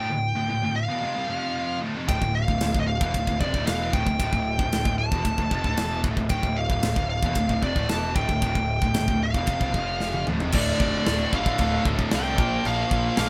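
A dark-toned, high-gain lead guitar carries the melody up front in this relentless, dark heavy metal piece in D minor at 114 BPM, over two scooped, bright rhythm guitars playing a riff in the background, one of them barely audible. At 2.1 seconds a punchy, fuzz-overdriven picked bass and a tight acoustic drum kit with bright cymbals and a medium-tuned snare come in. After a drum fill, a double-tracked distorted guitar adds its riff from 10.5 seconds, and the harmony later reaches a B-flat power chord at 12.4 seconds, with the band sounding as if it plays together in one room under light reverb.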